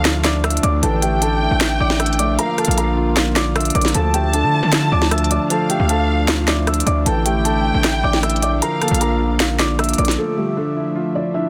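A distorted, saturated 808-style bass sits up front in this menacing, eerie half-time trap excerpt, its heavy, fast-attack tones decaying alongside an electronic drum kit of sharp snare, crisp hi-hats, handclaps and rim clicks. A felt-muted upright piano carries the dark, intimate melody through digital delay, supported by a long-sustaining grand piano, a detuned sawtooth analog pad with chorus in the background, and a distant, lush violin section with vibrato and portamento that stops at 9.4 seconds. When the drums and bass drop out at 10.2 seconds, the two pianos and the pad continue alone on a Dmadd9 chord in a dense, heavily limited mix bathed in studio reverb.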